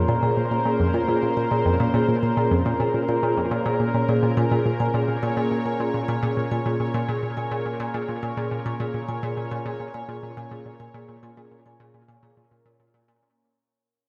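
A wet spring reverb hangs over this echo-heavy excerpt, giving the whole ambient piece a cosmic, mysterious haze as it moves at 105 BPM in Bb minor, resting on a single Bbm7 chord. A lush unison pad holds sustained chords throughout, its detuned sawtooth and square-wave layers thick and full-bodied, enriched by chorus and a slow attack with long release. Up front, an analog pluck repeats a low riff with a round, fast-attack tone that blends sawtooth, triangle, a noise layer and ring modulation, trailed by analog delay and chorus and carried along by a filter sweep. A vibraphone played with soft mallets and the motor off traces mellow, metallic arpeggios, its ringing notes echoed by analog delay and also shaped by a filter sweep. From 4.2 seconds the music begins a gradual fade-out that runs to the end at 13.4 seconds.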